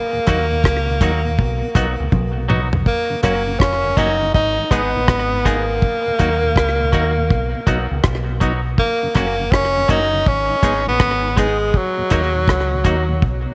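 A bright, up-front tenor saxophone carries the melody with vibrato and tape echo over a laid-back roots reggae groove, backed by a clean, compressed semi-hollow guitar, a mellow tonewheel organ with key click and slow rotary speaker in the background, a round, dark fingered dub bass, and a dry, deep drum kit of hi-hat, tight kick, rim click and toms with slapback echo and a fill at 2.1 seconds, all cycling through D#m, B, F# and G#m in a small, lightly reverberant room.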